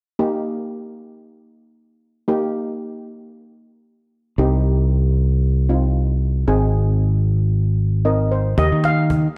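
A straight 4/4 calypso groove at 114 BPM in Eb major sets a carefree, festive mood in this short excerpt. A smooth, dark double-seconds steel pan played with medium rubber sticks carries the accompaniment through Eb, Cm and Ab chords. A growly, direct fingered electric bass enters at 4.4 s, and a steel pan fill from 7.8 s leads into an Ebadd9 at 8.6 s. There a bright, shimmering lead pan struck with hard rubber sticks and a woody cajon with faint snares arrive together, all set in a dark production with light reverb and small-room ambience.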